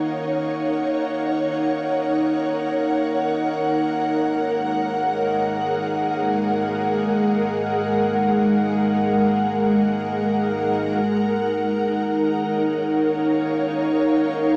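Ambient music in free time and E-flat minor, this short passage cut from a longer piece feels spacious and serene. An ethereal, airy pad sits up front for the whole 14.6 seconds, holding sustained chords with a slow attack and long release, its detuned, chorused tone thickened by a sub octave and its own reverb. Beneath it a reedy, breathing pedal harmonium holds a low drone until 11.0 seconds, while the harmony moves from E-flat minor seventh to an open A-flat fifth. At 10.9 seconds a mellow concert harp enters with fingerpicked, ringing arpeggios, barely audible, as the harmony returns to E-flat minor seventh. The dreamy mix is soaked in a lush hall reverb with a cassette tape character.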